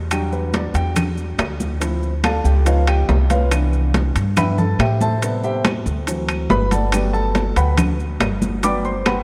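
A deep-toned concert grand piano with a subtle chorus takes the solo up front in this lively, sunny Afro-Cuban jazz passage cut from a longer piece, moving through Em7, Dm7, C#9, Cmaj7, Am7, D7 and Gmaj7 over a dark, thumpy pizzicato upright bass on gut strings, while bright, high-tuned congas struck with hard hands, ringing metal-shell timbales, and woody claves and grainy maracas in the background fill out the groove, the mix soaked in a dreamy plate reverb.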